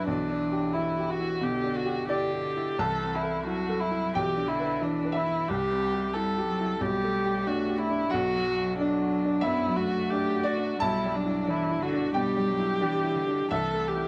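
A dark, bowed solo violin with vibrato carries the melancholic, longing melody of this neoclassical piano and strings excerpt in E minor at a rubato 90 BPM, over a rich, pure cello line played sul tasto with a soft attack and a clear, open upright piano accompaniment, all heard through close, detailed microphones with light reverb.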